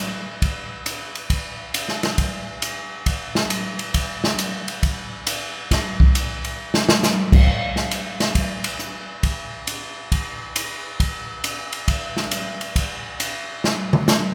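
A swinging big-band drum kit, acoustic and up front with a punchy kick, medium-tuned snare, toms, hi-hat, and airy, polished ride and crash cymbals in a light hall reverb, carries this sophisticated jazz excerpt at 136 BPM in 4/4 with a swung eighth-note feel, playing from 0.4 to 14.2 seconds, with fills at 6.6 and 13.6 seconds.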